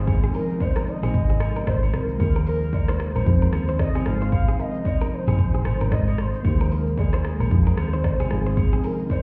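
Afrobeats at 113 BPM in Ab major, this short, romantic and sunny cut swings its sixteenths over a loop of Ab6, Ebsus4 and Fm7, led by a velvety sawtooth synth melody with chorus and digital delay. Beneath it sit a dark, boxy grand piano with audible action noise, an ethereal detuned pad, a bright, clean direct guitar riff with spring reverb, and a round hollow-body bass placed up front beside an electronic afro-pop kit with deep kick, metallic hats, rim clicks, shaker and toms. Vintage, band-limited agogo bells and woodblock add colour, a very quiet downlifter runs until 2.2 seconds, and the whole mix sounds muffled, as if heard through a wall into a stone room.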